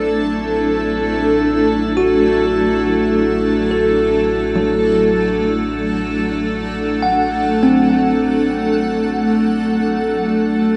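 A cloudy, evolving granular pad sits up front holding a sustained Dadd9/A chord, while a bell-like tine electric piano traces bright, clean arpeggios through analog delay in this reflective, melancholic ambient piece in free time, cut from a longer work. Beneath them a deep, round sub bass sustains a single low note and a glassy texture of drifting overtones floats higher up with chorus. Both of these fade out across the 10.8 seconds, all within an echo-heavy mix bathed in a wet plate reverb and small room ambience.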